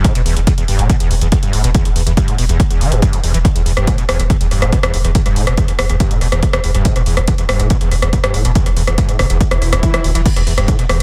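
Dry and echo-heavy, this short cut from a longer driving peak-time techno track has a hypnotic, industrial mood over a straight 4/4 pulse. A screaming, squelchy acid riff in sawtooth tone carries the piece from the start, distorted and resonant, with a filter sweep running through it, plus ensemble chorus, sidechain pumping and analog delay. Beneath it, a deep, round sub bass built from a sine holds one low note, overdriven, low-pass filtered and pumping with the sidechain. A heavy, layered electronic kick drum drives the groove with overdrive until 10.8 seconds. A punchy analog drum machine, re-recorded in a large room, adds crash cymbal, hi-hat and rim click through tape echo. An electronic swell sits in the background from 9.6 to 10.3 seconds, all over a single E minor chord.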